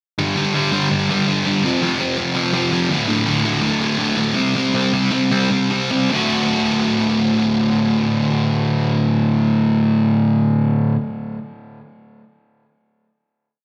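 Heard live through a club PA with wet club reverb, this rowdy, upbeat punk piece is a lone sludgy, overdriven electric guitar, double-tracked and up front with slapback echo and delay, picking driving eighth-note power chords through a short verse that slows from 3.1 seconds before landing on a final chord at 6.1 seconds.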